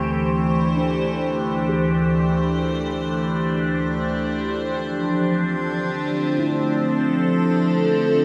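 In a straight three-beat lilt, this serene, spacious ambient fragment, cut from a longer piece, drifts along slowly. An evolving wavetable pad sits up front throughout, its bright, morphing unison chords swelling in on a slow attack and lingering on a long release, coloured by phaser and its own built-in reverb. Beneath it, a felt-muted upright piano plays very quiet arpeggios, its thick-felt tone soft, mellow and intimate with short sustain. The harmony moves from Am7/D to Dm7 at 4.5 seconds. At 6.0 seconds an analog drone enters in the background, a detuned sawtooth-and-pulse texture with ring modulation and chorus. The mix is soaked in a huge, dreamy reverb with an 8.0-second tail.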